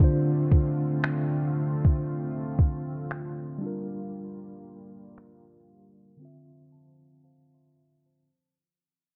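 Swung sixteenths drive this slow, late-night contemporary R&B fragment, where finger snaps and a soft kick carry gritty 12-bit sampler texture until the drums stop at 5.5 s. A mellow, clean tine electric piano sits up front over Dm7, Gm7 and Dm9 chords, adding a fill from 6.2 s into a break at 7.2 s. Beneath it, a shimmering, detuned pulse-width pad with slow attack pumps against the sidechain, while the dry, low-pass-filtered mix carries a filter sweep and fades out with a mood of longing.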